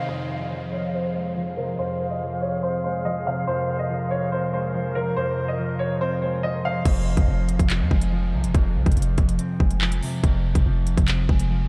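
A bright, ringing concert harp sits up front throughout this ominous, tense drill excerpt, its thumb-plucked accompaniment softened by a low-pass filter and spanning a broad register. Over it, a clear, woody upright piano carries the melody through a diffuse ambient delay, while an airy flute section holds sustained chords with expressive vibrato, both filtered and soaked in the same dreamy, heavily reverberant space. At 6.9 seconds the piano and flutes drop away and the half-time groove arrives: a punchy 808-style bass with a sine core, a noise layer, a fast attack and a decaying, mellow tail, alongside an electronic drum kit of hard-clipped kick, crisp hi-hats, handclaps and crash cymbal. The drums are up front, re-recorded in a large room and roughened with vintage 12-bit sampler grit. Bass and harp carry on to the end at 11.7 seconds, with the whole mix washed in a huge reverb that lends it a dreamy quality.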